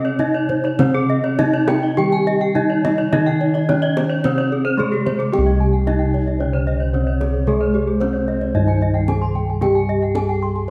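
Shimmering and brilliant, this Balinese gamelan excerpt in C pelog moves at 100-112 BPM in a straight 4/4. A wooden-mallet bronze metallophone carries the melody, while a mellow, padded-mallet metallophone accompanies in the background and two paired-tuned metallophones play arpeggios above, one bright and airy from horn mallets, the other close-miked and full. Round bossed gongs hold the bass up front, a tight, vintage-toned kendang is played with soft hands, and a low bamboo xiao adds a tongued, vibrato second line from 6.4 s, all within a moderate scoring-stage reverb.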